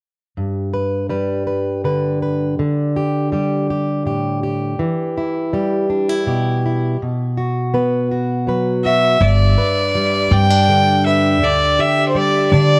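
A full-bodied, fingerpicked, plugged-in jumbo steel-string acoustic guitar opens this nostalgic, slow folk piece in 6/8 at 54 BPM in G major, moving through G, Dsus4, Em and B5 before a nasal, earthy bowed fiddle with light vibrato and tape echo takes up the melody at 8.8 seconds and a woody pizzicato upright bass joins at 9.2 seconds, all set in light reverb and studio ambience.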